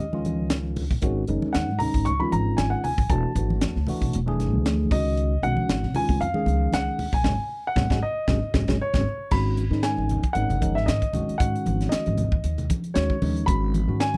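A dark, mellow baby grand piano carries the melody with a slapback echo over a clean tine electric piano colored by phaser and a woody, thumpy pizzicato upright bass, opening this intense, funky stretch of electric jazz fusion cut from a longer piece at 116 BPM in 4/4 with a light sixteenth-note swing. Thick-skinned congas sit in the background as a crisp, up-front drum kit with a punchy kick, high-tuned snare, hi-hat and crash joins, the sound dry and close while the harmony moves through suspended chords. The band hits a shared accent from 7.2 seconds before the music settles into G# minor at 9.3 seconds.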